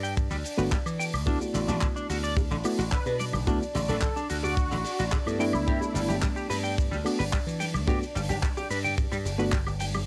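Sunny and feel-good, this 109 BPM nu-disco excerpt rides a punchy, foam-muted thumbed slap bass and an up-front tight kick with a polished funk kit of handclaps, hi-hat, shaker and woodblock, while a bright, chorused clean guitar riff, a reedy, slightly out-of-tune electric piano, sidechain-pumped sul tasto violins, ringing bongos and congas in the background, and a thick, detuned sawtooth unison lead with tape echo from 2.9 to 6.1 seconds move over Gadd9 and D69 chords, all with a cassette home-recording sheen.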